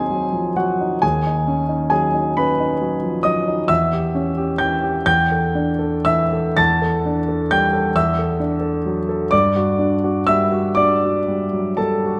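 A clear, intimate grand piano sits up front in this wistful, hazy impressionist solo, its natural tone carrying audible action noise as it spans from Eb2 to A6 across a slow, rubato 6/8 at roughly 36-46 BPM in dotted quarters. The harmony drifts from Ebm6 through B69/D#, Em6, Dsus24/E and Dadd9/E before settling on G5 near 9.3 seconds. A moderate concert hall reverb lends a gentle sheen to this brief passage cut from a longer classical piece.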